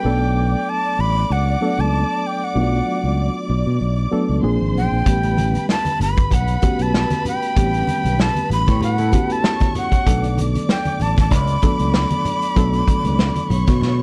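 A breathy jazz flute with a crisp, chiffy attack carries the melody up front in this cinematic, smooth slice of lush 1970s-style soul at 96 BPM in B minor, over even, bowed studio strings, a reedy, worn electric piano with fast tremolo and a fingered electric bass up front, while a punchy vintage drum kit and low-tuned background congas enter at 5.1 seconds, a bright, twangy guitar through a small old amp with spring reverb appears briefly at 8.7 seconds, and a drum fill arrives at 13.8 seconds.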